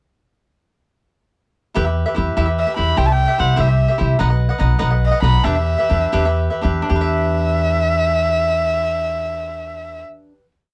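In a straight 6/8 lilt at 74-99 BPM counted in dotted quarters, this short, dramatic and passionate mariachi-style Mexican folk piece in E minor opens with crisp, picked acoustic cavaquinho folk strumming on open chord shapes at 1.7 s, joined by an up-front, woody, thumpy gut-string pizzicato upright bass playing root and fifth on the main beats, while a dark, intimate solo erhu enters at 2.6 s with a soft-attacked, airy-bowed, motif-based melody in period phrases colored by light vibrato and portamento, as the tempo slows from 4.2 s into a final chord at 6.9 s, all captured in a dry 1970s-style studio sound.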